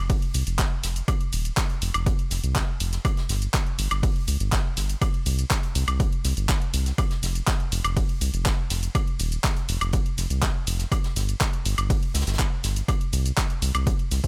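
Progressive house at 122 BPM with a dreamy, expansive mood, this excerpt rides a punchy, layered electronic kick and a round, dark analog bass built from detuned sawtooth, sine and triangle tones, both up front with the bass pumping, alongside a tape-tinged deep house kit of handclaps, hi-hat, ride cymbal, shaker and woodblock whose hats, percussion and cymbals pump too, while a very quiet natural acoustic kit adds hi-hat and a medium-tuned snare, all in a dry mix.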